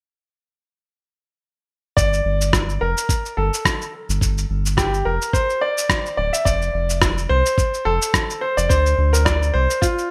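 A 1980s-style digital production with moderate plate reverb frames this smooth sunset chillout cut, where from 2.0 s a brilliant concert grand piano carries the melody through digital delay over a round, deep analog bass, a gritty, thumpy electronic kick drum and an up-front, compressed electronic shaker and rim click in gated reverb, all on a lightly swung groove.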